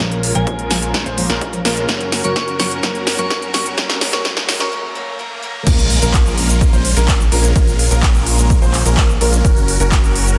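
Huge, detuned supersaw chords carry the riff through a filter sweep, phaser and dub echo in this emotional, anthemic festival progressive house excerpt at 127 BPM in Bb minor, moving between Bbm7 and Gb. A bright, full-bodied picked acoustic guitar and an intimate grand piano playing background arpeggios open the build-up, soon joined by a soft, warbling FM synth bell, while a fat, wave-folded analog bass, a punchy layered kick and an up-front kit with crisp hats, claps, shaker and cymbals drive beneath. After a drum fill, a break and a very quiet riser and swell, the guitar drops out as the drop and impact land at 5.7 seconds, all under light reverb and a dense, heavily limited master.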